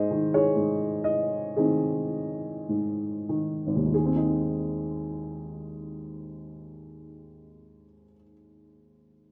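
A mellow, woody upright piano sits up front in this calm, tender fragment of a lyrical classical solo piece in Ab major, played in 4/4 with a free rubato feel between 47 and 66 BPM. The opening phrase slows down through its first 3.9 seconds before a new passage takes over, the boxy-toned piano spanning Ab1 to Eb5. Light reverb and a dark production keep the sound intimate across its brief 9.3 seconds.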